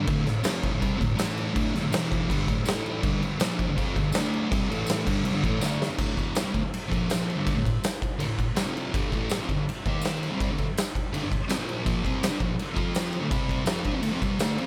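A raw, roomy sound with a pumping, saturated edge opens this short cut from a longer garage rock track, swaggering along at 163 BPM in 4/4 with a straight feel in D minor. A thick, double-tracked fuzz guitar sits up front from the very start, picking a distorted riff that ranges from D2 to F4 and moves through power chords such as D5, A5, G5, Bb5 and Eb5. An oversized, low-tuned acoustic drum kit joins at 0.1 seconds, also up front, with a boomy kick, a medium-tuned snare, dark crash and ride cymbals, and a gritty, big-room character. A drum fill at 5.6 seconds leads into a new section at 6.0 seconds, where the riff shifts to fresh chord changes. Far back in a large room, a very quiet, jingly tambourine adds a faint shimmer from 0.4 seconds.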